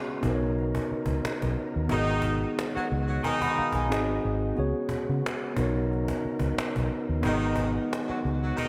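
Bathed in a lush hall reverb with a bright 1980s-style digital sheen, this short, introspective neo-soul fragment in G# minor moves smoothly at 90 BPM with a light sixteenth-note swing. A mellow tine electric piano and a clear tonewheel organ, its slow rotary speaker turning in the background, open at 0.0 s, joined at 0.2 s by a dark, round, foam-muted electric bass up front and a woody, distant cajon with faint snares. At 1.9 s a loose pop-style horn section with light vibrato and octave doubling adds delayed stabs over chords moving from G#m7 through G#7 and C#7sus4 before returning to Bmaj9 and G#m7.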